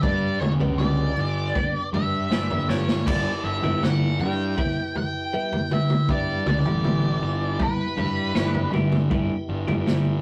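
A dark, fuzzed-out lead guitar with wah carries the melody over a clean, compressed twelve-string riff with phaser, a punchy overdriven fuzz bass and an up-front vintage drum kit. A piping tonewheel organ with chorus vibrato and key click holds chords in the background of this hazy, hypnotic psychedelic rock excerpt, and very quiet, bright congas sit distant from 0.4 seconds. The drums play a fill at 2.7 seconds as the harmony moves from G to Em/G, the lead guitar drops out at 8.7 seconds, and the rough rehearsal-room recording carries saturation and moderate reverb.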